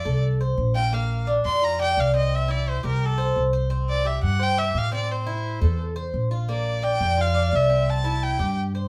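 Relaxed and danceable, this short Cuban son and guajira passage at 173 BPM features a clear, biting erhu carrying the melody up front with light vibrato, portamento and an airy, earthy bowed tone, while a metallic, picked Cuban tres with double strings plays arpeggios and a woody, thumpy pizzicato upright bass with dark gut strings anchors the low end, all played live in one room under a wet studio reverb.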